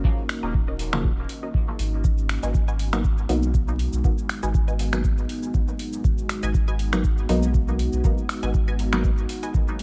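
An up-front, deep analog kick drives this meditative dub techno cut from a longer piece, with a booming drum machine adding finger snaps, metallic hi-hats and shaker over a swung sixteenth-note feel and a smooth, clean sine sub bass pumping beneath. Two muted sawtooth chord stabs carry the harmony: a low, detuned, wave-folded part with chorus, phaser and dub echo, and a higher, mellow riff with phaser, sidechain pumping and dub echo, moving from D#m7 to G#m7 at 2.0 s. A moody, warbling vintage pad with chorus and built-in reverb sustains throughout, while a digital ambience of vinyl crackle sits prominently over the mix.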